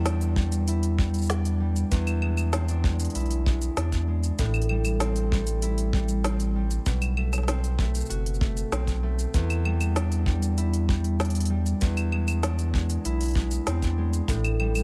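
A straight 4/4 pulse from a tight, dry kick and an overdriven electronic kit of woody snare, smooth hi-hat, claves and shaker carries this wistful, intimate folktronica fragment, where a fingerpicked concert harp rings out arpeggios through gritty 12-bit sampler texture and delay over a round, sustained sine sub bass, moving through Em7, E7, Am7 and B5 within a studio ambience.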